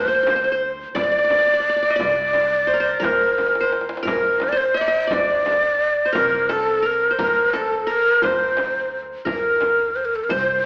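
A straight 6/8 lilt carries this festive Arabic maqam ensemble fragment, with a darbuka of clay and natural skin, deep and struck with hard hands, sitting in the background beside a small frame drum played with soft hands, and a drum fill lands at 3.4 seconds. Up front, a close-miked, breathy ney leads the melody with vibrato, tongued notes and an unsteady, human wobble, while a fingerpicked qanun adds a bright-edged second line from its triple strings and a woody, thumpy pizzicato upright bass murmurs low beneath. A moderate recital hall reverb and an AM radio tone give the whole ensemble a warm, old-broadcast glow.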